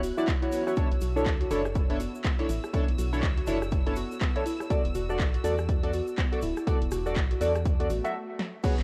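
A glossy, chorused polysynth sits up front with mellow, evolving stabs, its tone tinted by cassette tape and tape echo as it rides the sidechain pumping of this smooth, late-night deep house excerpt. Beneath it, a hollow, organ-like FM bass with a fast attack and a dark decay carries the low end, while a warbling, lo-fi pluck with a detuned, dusty character spins arpeggios through subtle chorus and tape echo. The electronic kick enters at 0.3 seconds, punchy and up front, joined by an analog drum machine playing crash, handclaps, hi-hat, rim click and a punchy snare in a short room, all with a swung sixteenth-note feel. In the background, a grainy, bright tube shaker adds texture, and a rich chamber violin section holds high, focused bowed notes with vibrato until 8.1 seconds. The chords move from Dmaj9 to Bm11 and then E9sus4, and near the end an electronic swell and downlifter arrive at 8.0 seconds, followed by a stop at 8.1 seconds and a drum fill at 8.4 seconds, all under light reverb.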